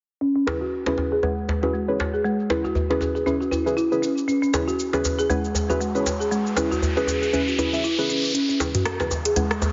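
A woody folk marimba played with soft mallets leads this short afro house excerpt, up front and rustic, spinning arpeggios in C# minor pentatonic through a low-pass filter and dub echo. At 118 BPM with a swung 16th feel, the driving, warm groove rests on a C#m7 chord. An electronic afro-pop drum kit supplies cabasa, metallic hi-hats, rim clicks and toms, filtered and set in studio reverb, beside a tight, cracking djembe placed close in the mix. A deep, dark chord stab with a nasal edge and a sub octave adds decaying hits colored by chorus and dub echo. A filter sweep moves across the marimba throughout, an electronic riser enters at 5.6 seconds, and from 8.3 seconds a build-up arrives with a sweep on the stab as well. The mix has light reverb and a heavily compressed, radio-like sound with the top end rolled off.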